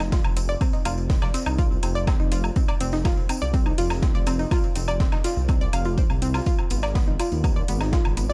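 Hypnotic and dark, this melodic techno passage, cut from a longer piece, moves in a straight 4/4 feel over a Fm7 chord that shifts to Abm6 at 6.5 seconds. A heavy, layered electronic kick sits up front, while a menacing, detuned saw bass swells and evolves beneath it, saturated and sustained, pumping through sidechain compression. An analog pluck spins arpeggios in a round, wave-folded tone with fast-attack, decaying notes, treated with chorus, digital delay and its own sidechain pumping. The percussion is layered: overdriven electronic woodblock and metallic hats, a jingly acoustic tambourine, and a gritty, pitched-up, sampler-style breakbeat kit with a high-tuned snare set in the background, its hats high-passed and pumping. From 0.6 seconds a warbling, nostalgic tape-like pad drifts in, lo-fi and barely audible. The production is dark and warm, with little reverb.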